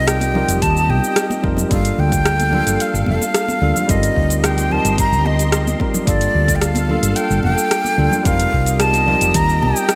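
A breathy, vibrato-laden jazz flute carries the melody up front, with delay on both it and a clean tine electric piano, over silky string-machine chords with ensemble chorus and vintage sampler grit, a round, woody fretless bass, an overdriven deep house kit of cabasa, metallic hi-hat and rim click, an overdriven electronic kick, and very quiet, high-tuned congas, all set in a lush hall reverb with a bright 1980s-style digital sheen for a relaxed sunset chillout excerpt.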